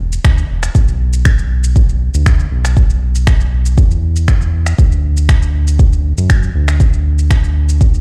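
A deep, layered electronic kick drum sits up front, tape-toned and warm, driving this spiritual afro house cut at 119 BPM in a straight 4/4. Alongside it a round, dark analog bass of blended sawtooth and sine tones moves between E1 and F#2 with a fast attack and sustained notes, thickened by tube saturation and breathing with sidechain pumping. Quieter electronic shaker and finger snaps add a produced, layered shimmer, and the whole groove sounds as if played on a big sound system in a bare room with a large studio reverb.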